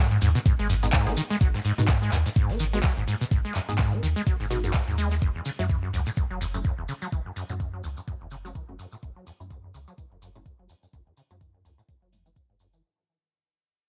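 A squelchy, resonant sawtooth acid bass riff with overdrive, chorus and delay opens over a deep, round sine sub bass, joined by a thumpy, up-front kick, a booming overdriven analog drum machine with metallic hats and handclaps, grainy maracas, a very quiet gritty soul-kit hi-hat and snare that stops at 5.2 s, and a detuned, phased dub chord stab, as this driving, hypnotic acid house excerpt at 126 BPM swings over G#m7 and F#7(no3) through filter sweeps, sidechain pumping and a fade-out on a dry, cassette-tinged hardware recording.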